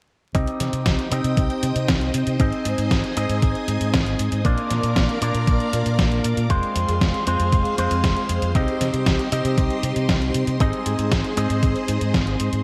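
Italo disco in C minor at 117 BPM, this short excerpt cut from a longer piece carries a nostalgic, melodramatic mood over a straight 4/4 pulse. A lush, vintage string machine holds sustained sawtooth chords with a slow attack and long release, thickened by ensemble chorus, as the harmony moves through Cm, Ab, Bb and Fm before returning to Cm and Ab. Up front, a dark, clean electric guitar plays compressed stabs through an envelope filter and low-pass filter, while a bright, punchy fingered electric bass, also run through an envelope filter, carries a filter sweep from 0.3 to 12.6 seconds. The drums pair a thumpy, overdriven electronic kick, which stops at 12.2 seconds, with a detuned 8-bit drum machine supplying hi-hat and a medium-tuned snare, overdriven and bathed in gated reverb, both re-recorded in a small room. Light reverb and a layer of vinyl crackle lend the recording a worn, retro sheen.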